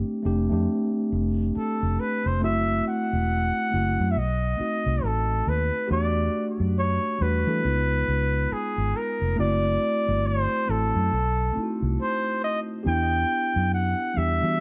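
A slow 69 BPM groove in 4/4 with a lazy 16th-note swing sets a sultry, late-night R&B mood in this short excerpt, where a mellow tine electric piano comps through jazz-tinged chords like F69, F#m7b5, B7b9 and Em11 over a dark, round, foam-muted fingered electric bass that sits punchy and up front. At 1.6 s a warm, vintage flugelhorn enters as the solo melody, its scooped notes bathed in plate reverb and riding the moderate studio ambience until the close at 14.6 s.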